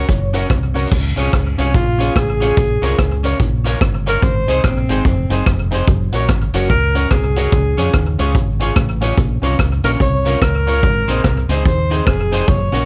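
Swung eighths at 145 BPM drive this bouncy, cheerful ska excerpt in Db major, where a boomy, dark-cymbaled street-band drum kit and a round, dark fingered bass sit up front under clean, picked electric guitar and woody upright piano stabs with slapback echo, while a soft, flute-like tonewheel organ with fast rotary speaker sounds only through the first 0.5 seconds and a breathy, whispered alto saxophone with light vibrato enters at 1.6 seconds to take an intimate solo over a Gb, Db, Bbm, Ab progression in a lightly reverberant room.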